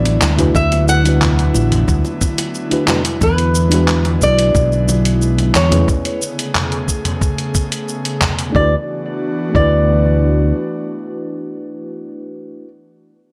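Opening at 0.0 seconds, a fingerpicked flamenco guitar with audible finger squeak carries the melody over a warbling, vintage FM electric piano, a breathy, detuned pad and a round, dark fretless bass sitting up front, while gritty, compressed dusty soul sampler-style drums with handclaps, hi-hat, shaker and toms, a thumpy electronic kick and very quiet hard-hand congas and bongos drive this smooth, relaxed sunset chillout cut in D lydian at 90 BPM through a light reverb before the percussion gives way by 9.7 seconds.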